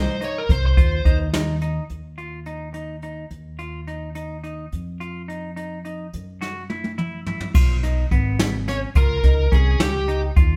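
An up-front jazz kit played with brushes drives this intricate progressive instrumental in 5/8 at 213 BPM (eighths), its dark cymbals and boomy kick leading to a fill from 6.4 to 7.5 seconds. Woody pizzicato upright bass sits close beside it, while a twangy, scooped clean electric guitar weaves compressed fingered arpeggios underneath. A biting, overdriven lead guitar opens with a short picked solo and returns at 8.7 seconds, all captured as a band playing live in one room with light reverb in this excerpt from a longer piece.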